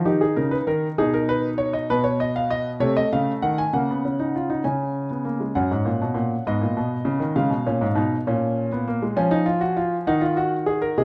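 Heard close and detailed in a recital hall with a moderate reverb, a concert grand piano sits up front with an intimate, natural tone, deep bass and audible action noise. It plays alone, a solemn, serious baroque-style three-part fugue in a straight 6/8, tuned to A4 = 439 Hz and spanning F#2 to G#5. This fragment of a longer piece moves through shadowed harmonies such as Eb7, Cdim7 and C#sus4 before a second passage begins at 5.6 seconds and settles on D#m at 10.1 seconds.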